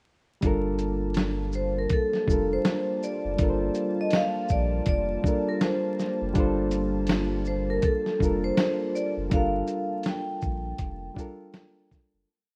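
At 0.4 s a gritty, compressed sampler-style drum kit with a thumpy kick, medium-tuned snare, shaker and quarter-note hi-hats opens this melancholic, nostalgic lo-fi hip hop piece in G minor at 81 BPM with a swung feel, arriving together with a reedy electric piano that pushes spread Gm9 voicings with grace notes through cassette tape, a sparse, deep sub bass with chromatic approach notes, and a soft, detuned sawtooth pad with chorus, before a dark, ringing vibraphone with slow motor vibrato enters at 1.6 s playing hook phrases, the whole piece sitting in digital ambience with vinyl crackle and a rough home-demo sound before a fade-out from 9.3 s.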